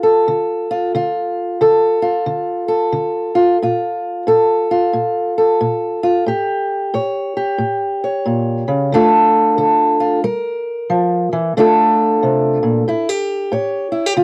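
Blues in D minor at 90 BPM, brooding and soulful, swung in 4/4 and cut from a longer piece. A solo fingerpicked acoustic archtop guitar sits up front for the full 14.2 seconds, its old strings giving a woody, boxy tone with a cassette-tape character. The chords move from Dm through Bb5 and A7 and back, passing Gm before closing on A7, in a dry home recording with little reverb.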